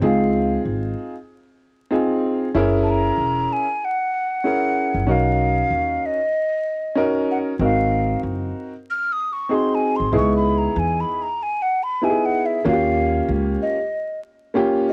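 Smooth and warm, this jazz-hop excerpt cut from a longer piece moves at 95 BPM in 4/4 with a swung sixteenth-note feel, as a mellow, airy flute with a hollow, straight tone and tongued phrasing plays a solo throughout the 14.9 seconds over a Dbmaj7, Gb7, Bmaj7, Ab7, Dbm7, Eb7 progression. Beneath it, a woody, vintage upright piano with long sustain and plate reverb carries the accompaniment, while a pizzicato upright bass with steel strings gives a dark, growly, thumpy low end until it stops at 13.6 seconds. The home cassette recording places every part up front in a booth with moderate ambience, with tape colour on the flute and a layer of vinyl crackle.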